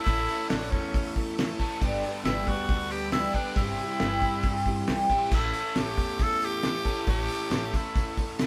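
A raspy, close-miked tenor saxophone carries the melody up front with vibrato and scooped notes in this hopeful folk rock and heartland rock excerpt, moving at 137 BPM in A mixolydian over A, Gadd9 and C/G chords. Beneath it, a shimmering octave-doubled twelve-string acoustic guitar and a double-tracked overdriven electric guitar riff sit with a woody, growly upright bass in the background, a dry 70s drum kit with a fat snare placed prominently, and a very quiet reedy tonewheel organ holding chords through a slow rotary speaker. A jingly tambourine joins at 5.3 s, and the band sounds like it is playing live together in a small room.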